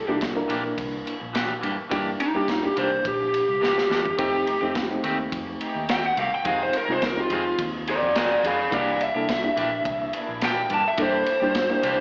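A lead guitar through a small cranked amp opens the piece with an overdriven, picked solo, dark in tone and up front, carrying the melody across the full 12.0 seconds of this soulful, rollicking straight-eighth soul blues in C mixolydian at 106 BPM. Beneath it, a reedy, worn electric piano, slightly out of tune and lightly overdriven, pulses with fast tremolo as it fills in the harmony, while a clean electric guitar adds picked stabs. A vintage muted fingered bass gives a round, foam-muted bottom, and a crunchy breakbeat kit of kick, snare, ride and toms sounds gritty and saturated with a rolled-off top, marking a drum fill from 3.6 to 4.2 seconds. At 4.2 seconds, as the chords move from C9 to F9, a very quiet, lush string section enters with bowed, vibrato-rich sustained chords, continuing through Fm7 before the return to C9. The guitar, electric piano and clean guitar share plate reverb and slapback echo, and the whole performance comes across like a live gig heard through a club's PA with a filtered AM-radio character.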